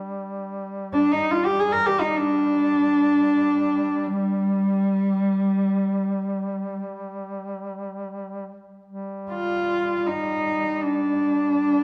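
A woody, bowed cello sings a mournful, solemn melody up front with light vibrato from 0.9 s, over a mellow, soft-attacked duduk drone that holds a low G from the start with its own vibrato and scooped notes, in this short excerpt of a free-time Caucasian folk lament wrapped in moderate concert hall reverb.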